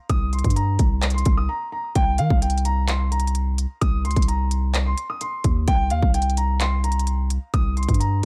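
A half-time trap groove in 4/4 carries this melancholic, eerie hip hop fragment, its up-front electronic kit pairing a hard-clipped kick with crisp hi-hats and handclaps, and a brief break between 1.5 and 2.0 seconds. Beneath it, a long, sustained 808-style bass sounds deep and sine-like, with a fast attack and a mellow decay that sits close to the listener. Up high, a dark concert grand piano carries the melody with a natural, mellow tone, all set in a digital ambience.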